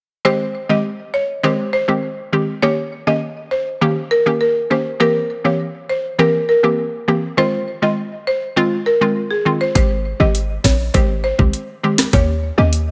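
A buzzing, woody marimba carries the melody from the start, its tape echo trailing over a hollow, detuned square-wave pluck washed in chorus that supplies the accompaniment through a sultry chord cycle of Abmaj7, Eb7, C7 and Fm7. This bouncy dancehall cut at 101 BPM holds the two instruments alone until 9.8 seconds, when a punchy, tight 808-style bass and an overdriven island pop kit with a knocking kick, sharp snare, rim click and metallic hats arrive up front. Light digital reverb frames the short excerpt, which is taken from a longer piece.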